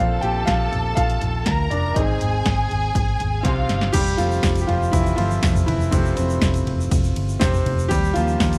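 A clear, up-front concert grand piano with deep bass and short sustain carries this hopeful, uplifting piano-driven pop excerpt at 121 BPM in F major, playing a solo throughout over a punchy, tape-warm analog drum machine and a dark, round, foam-muted electric bass. A lush, distant violin section adds a bowed second line with vibrato until 3.9 s, where a drum fill closes the opening passage and a grainy egg shaker enters in the background. The chords move from Bbsus2 through Ab to F and Eb, set in light reverb and small room ambience.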